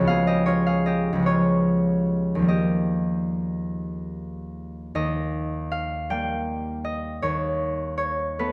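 A concert harp opens on a ringing, fingerpicked Db9 chord, set up front in this wistful, mysterious fragment of a longer classical solo harp piece, moving in a rubato 6/8 at roughly 47-54 BPM in Eb major. The harmony settles on Ebadd9 at 2.5 s, and a second passage begins at 5.0 s and reaches Badd9/D# at 7.2 s, with the harp ranging from Db2 to G5. A moderate recital hall reverb and a dark, warm production surround the solo instrument.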